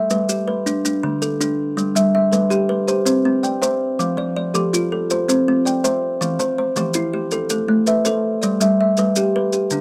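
A woody, up-front kalimba opens this hypnotic, rippling excerpt of southern African traditional music, spinning a mbira-style interlocking cycle of arpeggios in 12/8 at 108 BPM in G mixolydian, its thumbnail plucks ringing out of a hollow box. Grainy, mellow maracas sit close and dry beneath it from 0.1 seconds, and a second plucked kalimba with the same mid-forward resonance joins at 2.0 seconds. The harmony cycles from G through D5, G, C, F, C, Em and Am back to G, captured as a dry, close 1970s-style studio recording with moderate booth ambience.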